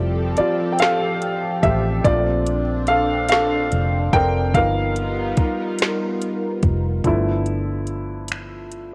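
A baby grand piano takes the lead in this slow, sensual R&B piece in 6/8 at 48 BPM. Its tone is warm and intimate, with the soft noise of its action audible as it carries a solo passage up to 7.0 seconds. A chorused pulse-width pad holds mellow, shimmering sustained chords beneath it through the same stretch. The pad has a retro character, with a slow attack and a moving notch in the sound. A dark, round, foam-muted electric bass sits up front with a punchy, amped presence. An electronic drum kit with finger snaps, metallic hi-hats, a soft kick and a woody snare joins at 0.4 seconds. The harmony moves through Fmaj9, Bbmaj9 and G7alt before settling on G13 as a new section begins at 7.0 seconds. The whole short cut sits in light reverb, coloured by worn cassette tape with a warbling pitch drift.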